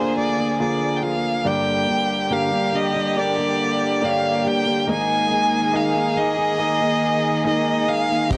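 A focused, bowed solo violin with vibrato and a cassette-tape tint carries the melody of this heartfelt 70 BPM pop ballad excerpt, up front beside a rich, earthy chamber string section holding sustained chords, while a clear concert grand piano with audible action noise and long sustain accompanies and a full-bodied fingerpicked jumbo acoustic guitar plays arpeggios in the background over a move from Bb7/D to Gm at 1.5 seconds and Absus2 at 4.9 seconds, before a dry, dark, tape-colored 70s drum kit slips in with kick and hi-hat at 8.3 seconds, captured as a home cassette recording in a small room with light reverb.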